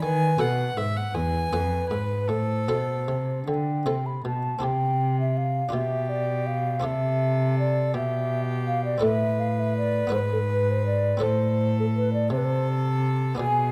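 Grave yet flowing, this baroque-style sonata movement moves in a slow 6/8 at 54 beats per minute, set in A minor before turning to C major at 4.6 seconds. A mellow, hollow concert flute carries the melody with vibrato and tongued notes, its airy tone sitting above a violin that plays a second line with a nasal, reedy gut-string sound and an airy bow. Beneath them, a dark cello holds the bass up front, its period-style gut strings giving a smooth top, while a buff-stop harpsichord supplies plucked, muted, lute-like accompaniment in a dry Italian manner. All four players sound together throughout this short cut from a longer piece, with the cello the most prominent voice. Close, detailed microphones capture the ensemble inside a moderate recital hall whose reverb lingers for about 1.7 seconds.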